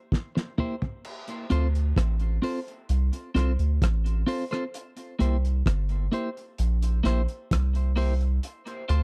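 Dry and close, this 1970s-style studio recording has little reverb. It is a short cut from a longer dub reggae piece in D minor at 65 BPM in a straight 4/4, meditative and deep in mood, moving between C7 and Dm7 chords. A cloth-damped, thuddy drum kit opens with a fill from 0.1 seconds. Its muffled, gritty sound carries dark crash cymbals, a fat snare, a tight kick, rim clicks, hi-hat and toms. A clean, picked electric guitar follows moments later, compressed and up front, steeped in spring reverb and dub echo through a high-pass filter, and a filter sweep colours it from 4.7 seconds on. The soft, round dub sub bass arrives at 1.5 seconds as the loudest part, its sustained, fast-attack tone sitting low beneath the kit.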